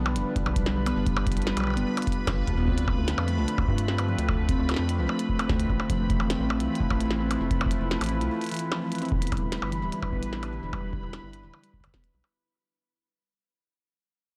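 An eerie, melancholic IDM fragment, cut from a longer piece, moves at a steady straight pulse in four. A warbling, lo-fi pad holds sustained chords under chorus and its own reverb, while a harp-like synth pluck rings out arpeggios through chorus and digital delay, and a rubbery, hollow square bass bounces beneath. High above, a bubbling texture with random filter steps adds a detuned shimmer, and a glitchy drum kit of tiny snare, clicky hats and percussion blips, with soft clipping on the snare and digital delay, sits in a small room beside a deep analog kick that enters at 0.4 seconds. The chords pass from G7 through Dm7 and Fmaj7 before a break at 8.3 seconds, after which the music settles on Em7 as a filter sweep moves across the pluck and the whole track fades out from 9.1 seconds. The recording itself is blown-out and overdriven under a light reverb, lending the mix a saturated haze.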